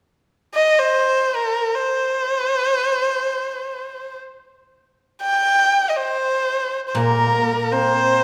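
Chinese traditional chamber music in free time and C yu mode, graceful and wistful, with a single bowed erhu carrying the melody up front from 0.5 seconds, its warm, close tone full of vibrato and expressive portamento. Near the end a bright, silvery guzheng played with fingerpicks rings in low at 6.9 seconds, and a mellow, shimmering hammered dulcimer adds a ringing second line at 7.0 seconds as the piece moves into a new section. A wet recital hall reverb lends the short passage a spacious, resonant setting.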